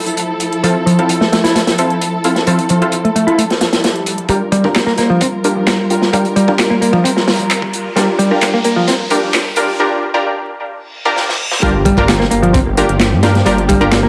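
Funky and raw, this breakbeat excerpt moves at 131 BPM in a straight 4/4, set in G dorian and shifting from Fmaj7 to Gm7 at 4.3 seconds. A crunchy, saturated acoustic breakbeat kit sits up front with a punchy kick and medium-tuned snare, its rolled-off top keeping it gritty and dark, while an overdriven analog drum machine adds handclaps and hi-hat through analog delay. Dark, woody bowed strings hold lush sustained chords with vibrato and sidechain pumping, as a growly picked electric bass plays a riff under a filter sweep and a bold, bright orchestra-hit-like synth stab cuts through with a short decay, cassette tape colour and echoes. A background electronic swell rises from 3.8 seconds, and from 4.3 seconds a build-up brings filter sweeps and drum fills, background risers, a break, and a reverse cymbal. At 11.6 seconds the drop lands as a thick, menacing detuned saw bass enters up front. 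The whole mix is echo-heavy, with a moderate plate reverb and vinyl crackle.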